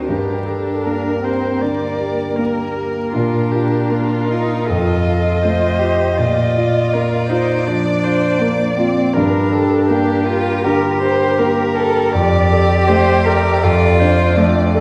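Tender and warm, this slow romantic movement for piano quartet moves at 80 BPM in 4/4 with a supple rubato feel, drifting through G minor, B-flat and F7 harmonies in a passage cut from a longer piece. A rich violin carries the melody with smooth, even vibrato, while a clear cello sings a second line with light vibrato, a focused viola fills in the accompaniment, and an up-front concert grand adds deep bass and long, open sustain. The quartet sounds as if heard from further back in a concert hall, bathed in lush reverb with a vinyl crackle.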